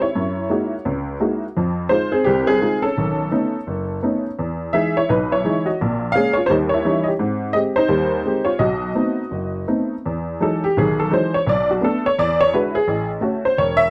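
Swinging and warm, this brief solo jazz excerpt at 171 BPM pairs a loose 4/4 swing with rubato phrasing on a detuned, jangly honky-tonk upright piano that sits bright and up front, ranging from E1 to F5 through chords such as Gb13, Emaj7 and B7b9 in a dark production with light reverb, before settling into E major at 10.1 s for a solo passage that runs to 13.9 s.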